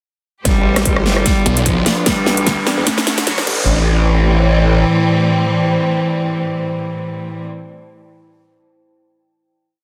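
A dense, heavily limited mix opens this short, chaotic and menacing heavy wobble dubstep piece, where a rich, up-front bowed cello riff and a clear string section ride over a half-time beat of huge snare, metallic hats and distorted kick, while a growling, wobbling bass and a snarling saw bass stab in, a riser builds behind them and a warbly lo-fi pad carries the final chord to about 7.7 seconds.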